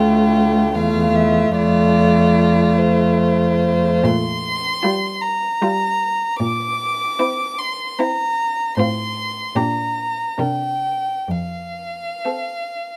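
Classical slow romantic movement for muted string quartet in a rubato 3/4, warm and lyrical, where an up-front first violin sings a veiled, vibrato-rich melody over a darker second violin line, a distant viola accompaniment with portamento, and a close, up-front cello bass that drops out at 12.1 seconds, all captured with dry, detailed intimacy as it moves from minor shadings to a resolving F chord near the close of this short cut from a longer piece.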